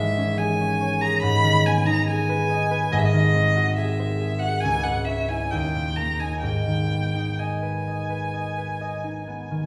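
A single bowed violin carries the melody in this melancholic, solemn romantic classical duo, its rich, smooth tone shaded with vibrato and kept even through its range of D#5 to B5. Beneath it, a concert harp plays the accompaniment from the low G#1 up to D#5, its thumb-plucked strings sounding mellow and ringing, and it sits a touch louder than the violin. Both instruments play throughout the 9.7 seconds, which are cut from a longer piece. The pulse drifts with rubato between 62 and 72 BPM in 4/4, in G# minor with tuning at A4 = 439 Hz. The harmony opens on C#m over G# and moves through G#m, G#7, C#m and D# before settling back on G#m at 6.4 seconds. A wet recital hall reverb surrounds the pair, and the listener seems to hear them from further back in the room.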